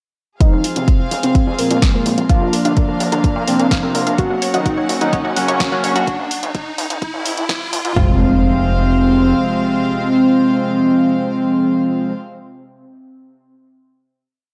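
A dramatic, cinematic melodic techno piece in F phrygian at 127 BPM opens at 0.4 s with a fat, detuned analog lead riff with vibrato, bold brassy synth stabs of held chords with syncopated pushes, a distant, floating string pad, a round background pluck arpeggio in a 3-step loop drifting against the bar, and a house kit with a punchy four-on-the-floor kick, floor tom, bright hats and a programmed snare backbeat. A gritty, nasal, saturated sawtooth bass gallops in sixteenth notes under a build through Fm, Bb and Gb, as filter sweeps move over the lead and pluck and a background riser and impact arrive from 2.9 s. At 8.0 s the drums fall away for a final Fm chord held by the lead, strings and brass in a dark production with a wet room reverb.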